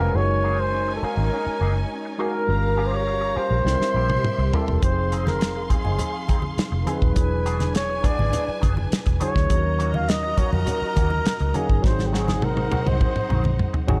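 A straight 4/4 groove at 103 BPM carries this lush, romantic 1970s-style soul excerpt, where a breathy, mellow flugelhorn with scooped notes leads the melody up front over a dark, round, foam-muted fingered bass, a worn, slightly out-of-tune tine electric piano with light overdrive, a distant bowed string section with vibrato and portamento, and a clean, compressed semi-hollow guitar riff with wah and analog chorus in the background, while a dry, damped 70s drum kit enters with a fill at 3.7 seconds, bright low-tuned congas join at 4.8 seconds, and another drum fill closes from 11.8 seconds, all in a small room with light reverb and chords moving from Gb69 through Fm7 to Ab7.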